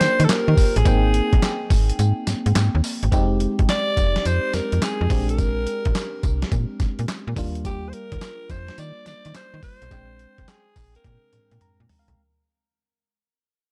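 A dark, dry production gives this bouncy, punchy R&B and new jack swing excerpt a close feel at 106 BPM, swung on the sixteenths and fading out across its length. Up front, a gritty sampler-style kit with a thumpy kick, snare, hi-hat, handclaps, tambourine and toms drives beside a snappy, metallic FM slap bass, while a glassy, bell-like FM electric piano with chorus spreads Ebmaj9, Abmaj7, Fm9 and Bb13 chords. A bright, raspy alto saxophone with delay carries the melody, a brief break arrives at 2.0 seconds, and a drum fill from 11.0 seconds and an electric piano fill from 11.3 seconds close the passage.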